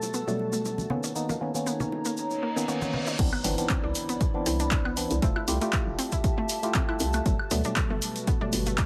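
Soulful and warm, this deep house excerpt opens with a moody, very quiet ambient pad, a warbling lo-fi tape-like pad in the background, a hollow organ stab up front with dub echo, a grainy tube shaker, bongos and congas that drop out at 3.0 seconds, and a round, bright analog pluck playing arpeggios with 12-bit grit and digital delay, before a reverse cymbal rises into a drop at 3.2 seconds, where an electronic impact lands alongside a bouncy, hollow knocking FM bass with tube saturation, a punchy tape-toned kick and an analog drum machine adding crash, handclaps, hi-hat and woodblock, all over major-ninth chords.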